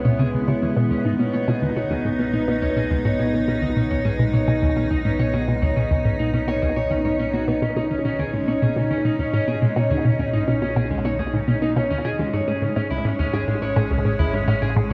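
A straight, steady 4/4 pulse drives this mysterious, cosmic stretch of sequencer-driven space music, where a juicy, squelchy blip pluck with ring modulation, phaser and tape echo plays an up-front riff while a morphing, detuned wavetable pad holds chorused chords moving from C#m7 through B to Amaj7 at 12.2 seconds. A dark, slightly broken-up electric guitar fades in with echoing arpeggios, a round analog bass fades in beneath, and a filter sweep runs across the arpeggio sound. The whole dreamy mix is soaked in plate reverb with a cassette-tape character.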